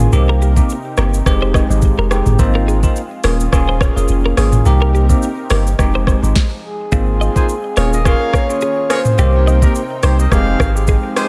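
Afrobeats with a mellow, hypnotic feel and a lightly swung groove, built on an up-front electronic drum kit with knocking kick, sharp snare, metallic hats, shaker, rim clicks and toms carrying vintage sampler grit in a large room, while a deep, punchy sine sub bass with a pitch-drop attack anchors the low end. A bell-like, barky tine electric piano with phaser, a bright, twangy twelve-string electric guitar riff with delay, and a lush, nasal detuned pad in the background cycle through minor seventh, sixth and suspended chords. During a brief stop at 6.4 seconds, a breathy, flute-like synth lead with vibrato enters at 6.7 seconds to take the melody, and a distant, roomy horn section adds a second line from 7.4 seconds, all washed in digital ambience in this excerpt from a longer piece.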